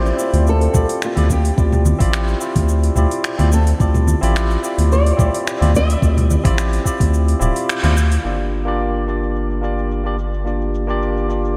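In a straight 4/4 groove at 108 BPM, this smooth, relaxed sunset chillout excerpt in D minor pairs a soft electronic kick and a tape-toned R&B kit of metallic, low-pass filtered hi-hats, finger snaps, shaker and crash cymbal with ringing congas in the background, while a round, deep analog bass sits up front, a barky, clean tine electric piano through a combo amp accompanies with diffuse delay, and a dark, fingerpicked flamenco guitar carries the melody in lush chorus and ambient echoes until 6.8 seconds, all inside a dreamy hall reverb, before a band accent at 7.7 seconds and a filter sweep on the drums from 8.2 seconds as the harmony shifts from Dm11 to Gm7.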